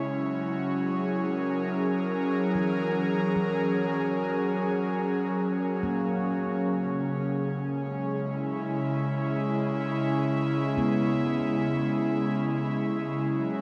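A breathy, airy pad opens this luminous, peaceful ambient excerpt at 73 BPM in a straight 4/4, holding sustained chords built from detuned sawtooth and triangle tones with a soft noise layer, a slow attack, long release and a gentle chorus shimmer. Sitting up front, the pad settles on F# before moving to C#m7 at 6.7 seconds. A handpan enters at 2.5 seconds and fades in gradually, playing meditative arpeggios in a low, narrow register. Struck with soft fingertips, its ringing stainless-steel tone is mellow and slightly boxy, set in the background and trailed by a diffuse ambient delay. The whole scene floats in a cathedral reverb with a 6.5-second decay, giving the calm, unhurried passage a vast, glowing space.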